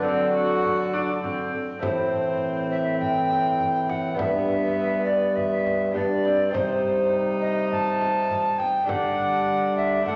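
The tenor recorder stands up front with an airy, woody tone and a tongued chiff, carrying the melody between A4 and A5 in this stately, courtly renaissance-style consort dance at 102 BPM in a straight 4/4. Beneath it, a single bowed viola with a reedy, period-style gut-string sound plays a second line, while a mellow, vintage-sounding bassoon holds the bass. A close-miked trombone with light vibrato and a soft attack adds accompaniment, alongside a delicate fingerpicked lute with doubled strings that sits in the background. A close, dry frame drum joins at 0.6 s, and the harmony moves from D to Am at 1.8 s, then through G and C minor before settling on Dsus4. The consort sounds in a reverberant recital hall, in a passage taken from a longer piece.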